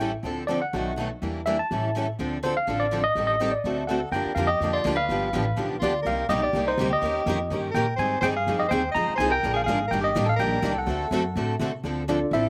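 Swinging and virtuosic, this brisk acoustic string swing (jazz manouche) fragment runs at 249 BPM and settles into G minor at 4.1 s. A worn, slightly out-of-tune tine electric piano carries the melody up front, lightly overdriven with slapback echo. It rides over two picked steel-string acoustic guitars, one a warm parlour and the other a bright auditorium with fresh strings, plus a woody, thumpy pizzicato upright bass on gut strings. At 3.9 s a smooth soprano saxophone with light vibrato adds a jazz second line, while the outdoor recording keeps the sound dry.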